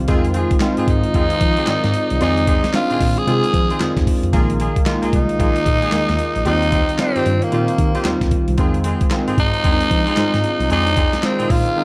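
A dark, warm mix with light reverb frames this punchy, slick new jack swing excerpt at 113 BPM, swung on the sixteenths in F dorian and tuned to A4 = 435 Hz. A compressed, pitched-down sampler-style drum kit with a thumpy kick, handclaps, hi-hat and a medium-tuned snare sits up front. A worn, slightly out-of-tune tine electric piano carries the bass line, detuned sawtooth analog keys with chorus and a filter sweep fill in the accompaniment, and a smooth jazz-style horn section adds tape-echoed stabs in the background over Fm7, Bb7sus4 and Eb69. From 0.9 seconds a raspy, growling tenor saxophone with light vibrato and tape echo takes the melody up front.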